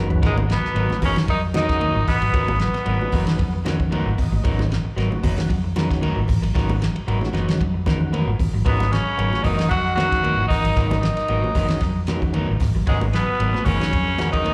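Heard through a club PA with light reverb, this defiant, driving afrobeat fragment rests on a saturated soul drum kit with a fat snare, a round, punchy fingered bass and high-tuned congas ringing in the background. A slightly broken-up, twangy guitar plays arpeggios while a second guitar adds dark, very quiet stabs, and a smooth tonewheel organ with key click and a slow rotary speaker supplies accompaniment and a fill at 3.6 seconds. A raspy, gritty tenor saxophone carries the melody up front, joined by a scooped, vibrato-laden alto and a distant, roomy baritone, all three horns falling silent from 3.6 until about 8.6 seconds.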